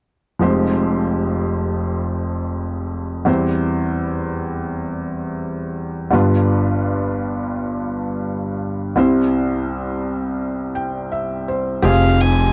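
Melancholic and heartbroken, this folk excerpt at 84 BPM in F harmonic minor rests on a soft felt-muted upright piano with audible action noise, moving from Fmadd9 through C/E, G7 and C from 0.4 seconds, until a woody pizzicato upright bass enters at 11.8 seconds and an intimate bowed violin with light vibrato and an airy sul tasto tone joins up front at 11.9 seconds, all caught in a dry, close 1970s-style studio sound with light reverb.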